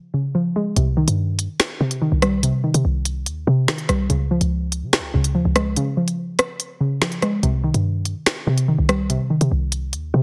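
A soft, round pluck with a dark chorused tone opens alone over a Db chord before a punchy, tight 808-style bass and an electronic drill kit arrive at 0.8 seconds, setting an ominous, cold mood in C phrygian at 144 BPM with a half-time feel. The kit pairs a woody, softly clipped snare with crisp hi-hats, finger snaps and rim clicks, while the kick drops out between 5.8 and 7.4 seconds. The harmony shifts between Cm and Db, and the dry, dense, heavily limited mix keeps the three parts up front in this short hip hop excerpt.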